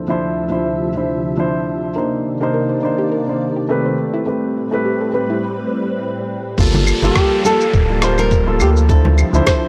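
Relaxed and warm, this short sunset chillout excerpt in G minor moves at 104 BPM with a light swing, opening on a dark, mellow concert grand piano with tape echo over silky string-machine chords that carry phaser, ensemble chorus and a filter sweep, while a soft, round pluck with chorus and cassette-tape colour plays background arpeggios from 2.0 to 5.4 s. After a brief break, at 6.6 s a fingerpicked flamenco guitar takes the melody with tape echo, joined by a deep, up-front analog bass, a thumpy, gritty sampler-style kick, shaker, claves and rim click, ringing congas softly in the background and an electronic downlifter. The dry, gritty hardware recording sits in light digital ambience as the chords move from Dm9 through Cm9 and Am9 to Gm9.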